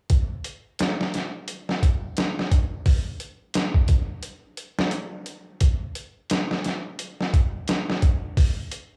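A sampler-style trip hop drum kit of hi-hat, thumpy kick and medium-tuned snare sits up front, its compressed, pitched-down sound gritty and smoky, playing from 0.1 to 8.9 seconds. The groove moves at 87 BPM in 4/4 with a 58% swing on the sixteenths, giving this short cut from a longer piece a hypnotic pull. Light reverb and a small-room digital ambience frame the kit.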